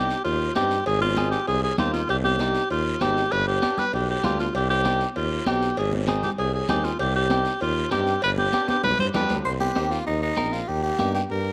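A fiery, driving cumbia in C harmonic minor moves at a brisk 196 BPM in straight 4/4, heard here as a short cut from a longer piece. A breathy, whispered alto saxophone carries the melody up front with light vibrato and a soft attack, colored by tape echo, while a clean, picked electric guitar supplies compressed accompaniment and a punchy tuba with a smooth top anchors the bass. Raspy guiro and ringing, high-tuned congas sit close and dry in the background, and distant cowbell and timbales ring faintly as though from a large room. After a drum fill from 8.5 seconds, the alto drops out and a growling, gritty tenor saxophone takes a close-miked solo at 9.5 seconds over Cm and Eb. A moderate plate reverb gives the whole performance a shared sense of space.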